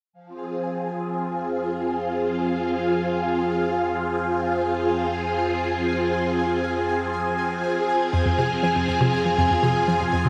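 Cosmic and mysterious, this excerpt of sequencer-driven space music drifts in free time on an F minor chord, with a swirling, vintage phased string machine holding bright sustained chords up front beneath a tempo-synced pulsing gated texture. A nasal, evolving analog drone enters in the background at 1.6 seconds, and a hollow, bouncy square-wave pluck riff with delay joins at 8.1 seconds. The recording sits in a huge, wet ambient reverb with a long tail.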